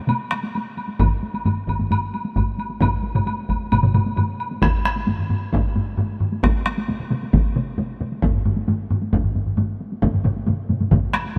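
Japanese traditional taiko drum ensemble music with a driving, ceremonial mood in a straight 4/4, heard as a short cut from a longer piece. Several taiko ensemble parts, struck with heavy or hard sticks and sounding close, build a thunderous bed, while a compressed, saturated woodblock clacks along until 4.5 seconds. A solo taiko part, set up front in a small-room sound, enters at 1.0 seconds and plays with the ensemble, all of it carried by a huge ambient reverb.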